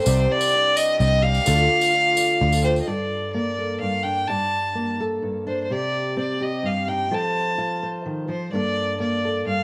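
A straight 3/4 pulse at 127 BPM carries this bittersweet, wistful indie folk excerpt in G minor, with an arrangement that builds as it goes. A single bowed fiddle, dark and woody with light vibrato, sits up front yet sounds distant as it carries the melody throughout. In the opening stretch, a shimmering, octave-doubled twelve-string acoustic guitar with old strings and a boxy tone is picked beneath it. Alongside it are a warm upright piano in the background, a round, amped, foam-muted electric bass up front, and a jingly tambourine heard close and dry. The piano adds a fill at 1.9 seconds before these parts drop away at 2.9 seconds, when a fingerpicked steel-string acoustic guitar with an auditorium body takes over the accompaniment. The harmony moves from Cmadd9 and Dm into Gmadd9, Cmadd9 and F, and light reverb gives the studio ambience a gentle sense of space.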